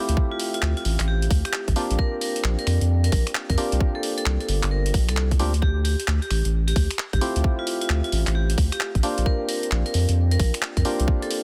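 A swung two-step garage groove at 132 BPM in 4/4 drives this bouncy, soulful cut from a longer UK garage piece in D minor. A tight, layered electronic kick sits up front beside a gritty, compressed sampler-style breakbeat kit of finger snaps, handclaps and hi-hat. Beneath them a deep, saturated sine sub bass holds long, thick notes with a fast attack, while a hollow, mellow organ-like stab with a noise layer decays through lush chorus and dub echo. A bright vibraphone played with hard mallets and the motor off rings out a metallic melody, also trailed by dub echo. The harmony moves through Dm11, Bb6 and C9sus4, returning to Dm11 at 5.6 seconds, all set in digital ambience with a dense, heavily limited modern master.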